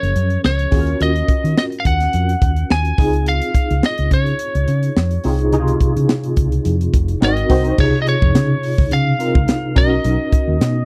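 A 106 BPM swung sixteenth-note groove in 4/4 drives this breezy, upbeat 1980s jazz-funk pop excerpt in Db major, where a crisp fusion drum kit with a high-tuned snare and punchy kick sits up front beside a dark, round, foam-muted fingered bass, a worn, slightly out-of-tune tine electric piano with medium tremolo and ensemble chorus comps through chords like Gbmaj7, Ebm7 and Dbmaj7, and a bright, twangy, lightly driven lead guitar with slapback echo carries the melody, all in a dry, close studio sound that shifts to a new section at 7.8 seconds.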